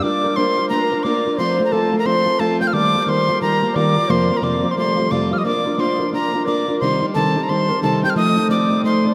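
A swung 4/4 Celtic hornpipe at 177 BPM in Bb major, this wild, dark and lively folk excerpt sets an airy, close-miked tin whistle melody with tongued chiff and expressive vibrato up front over a bright wooden baroque flute second line, unsteady and touched with vibrato, and a warm, picked parlour steel-string acoustic guitar, all three playing throughout the 9.1 seconds in a vast, echoing cathedral reverb as the chords move from Bb through Ebadd9 and Cm to F7.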